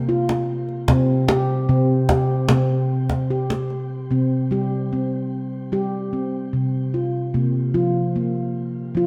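A ringing handpan of nitrided steel, played with soft fingertips, carries mellow arpeggios from C3 to G4 through a shimmer reverb, up front in this meditative, hypnotic world piece at 74 BPM in a straight 4/4. A woody cajon with faint snares and hard hands joins at 0.3 s and stops at 3.8 s, leaving the handpan to move from C5 toward Bb5/C inside a wet echo chamber. This passage is cut from a longer piece.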